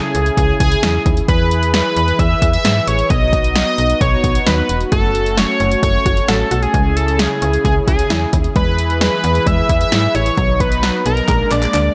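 Opening at once with a nasal, octave-doubled sawtooth lead carrying the melody through chorus and tape echo over a brassy, chorused analog pad, this cool, nocturnal synth-pop excerpt in C# minor at 132 BPM soon adds a snappy, metallic FM bass and an up-front, overdriven deep house kit with a deep kick, punchy snare, handclaps and hi-hat, while a lush, detuned unison pluck joins with tape-echoed arpeggios in the background at 4.9 seconds, the chords moving from C#m through E, B and F#m before a drum fill at 11.3 seconds lands on A#7 in a light digital ambience.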